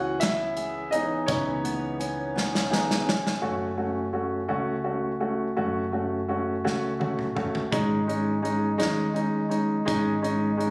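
A woody upright piano plays a solo at the opening of this aching, melancholic six-eight pop ballad, accompanied from the start by a dark, boxy fingerpicked acoustic guitar with old strings and tape echo, and a round, punchy hollow-body electric bass. An up-front country drum kit with a small-room sound, tight kick and medium-tuned snare adds hi-hat, toms and drum fills, dropping out at 3.4 s and returning at 6.7 s, while the guitar's arpeggios end at 4.0 s. The chords move from C#m7 to F#m and G#sus4, captured on a phone in the room with light studio reverb and compression.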